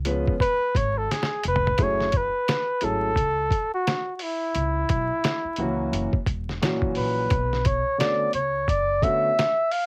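Swung sixteenths from a muffled, pitched-down sampler drum kit with a thumpy kick and fat snare anchor this cool, mellow jazz-hop excerpt, where a woody pizzicato upright bass and a dark, intimate grand piano with audible action noise support an up-front flugelhorn melody full of light vibrato and scooped notes, all carried by vinyl crackle and a cassette-tape haze, with a drum fill at 1.1 seconds.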